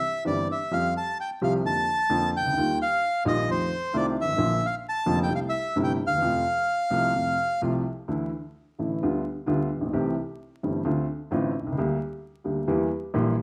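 A reedy, close-miked bandoneon with a slapback echo carries the melody of this passionate, elegant tango, played with a free rubato feel, before falling silent at 7.6 seconds, while a dark, woody upright piano accompanies up front until 13.3 seconds, all set in a wet large-studio reverb with a layer of vinyl crackle.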